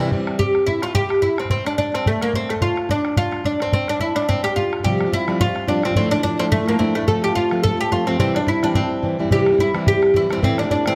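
A bright, woody oud with slapback echo carries the melody from the first moment of this rollicking Celtic reel excerpt in C major at 215 BPM, joined at 0.1 seconds by a boomy, open bodhran in a live room, while a boxy, fingerpicked parlour steel-string guitar sounds briefly at the start and returns at 4.8 seconds with chords moving from Csus4 through Dmadd9 and F to C, all captured close and detailed with light reverb and a lively swing.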